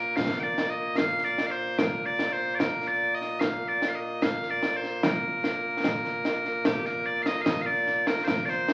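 This short cut from a longer piece sounds like a very old 78 rpm record, with vinyl crackle riding over a wet, large studio reverb. It is Scottish traditional pipe music in 2/4 at 74 BPM, in Bb major, with a straight feel and a proud, stirring mood. Loud bagpipes carry the melody from the first moment, their tone bright, piercing and continuous, and they sit up front as a solo voice spanning Bb2 to G5. Concert snare drum and concert bass drum join at 0.2 seconds, acoustic and close, with brilliant cymbals and the feel of a small room. The opening passage gives way to a new section at 6.7 seconds, and both parts carry on to the end at 8.7 seconds.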